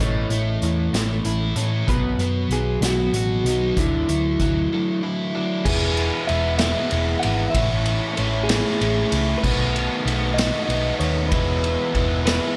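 A lilting 6/8 sway, felt in slow dotted-quarter pulses, carries this wistful, jangly indie rock passage, cut from a longer piece. A twangy, slightly broken-up lead guitar through a small old amp sings the melody with analog delay. Beneath it, two compressed, overdriven guitars play the riff, one sitting in the background with lush chorus and the other carrying subtle chorus and analog delay. A round, punchy hollow-body short-scale bass anchors the low end, and a vintage kit joins at 0.3 s with a punchy kick, dark cymbals and a pumping small-room character. A very quiet, flute-like tonewheel organ holds sustained chords through a slow rotary speaker. After a brief break at 4.7 s, the music moves from A, B and Dadd9 into a second section built on E, Amaj7 and B7, all bathed in a dreamy, reverb-soaked plate sound.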